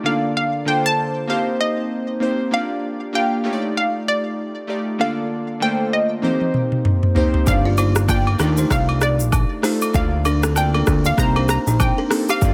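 A smooth, hypnotic afrobeats excerpt at 97 BPM with a swung sixteenth feel, opening on glassy digital keys with a chorus shimmer and a round, detuned analog pluck melody drifting over jazzy Bbmaj7/D, Cm7, Gm7 and Ebmaj9#11 chords in a digital ambience. An overdriven afro-pop drum kit with a deep kick and metallic hats arrives with a fill at 6.2 seconds. A fat, saturated sawtooth bass then enters at 7.5 seconds, followed by a buzzing, woody kalimba riff with digital delay and close acoustic agogo bells, woodblock, egg shaker and group handclaps.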